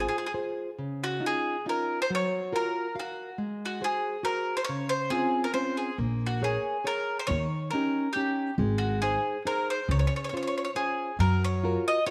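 Lively and romantic, this fragment of an Italian folk serenade in Db major moves in a swung 3/4 at 138 BPM, with a bright, double-strung bowl-back mandolin picking the melody up front over a full-bodied, fingerpicked nylon-string guitar, while a woody pizzicato upright bass sounds at 0.0 seconds and returns from 6.0 to 11.8 seconds, all set in a wet echo-chamber and small-room reverb.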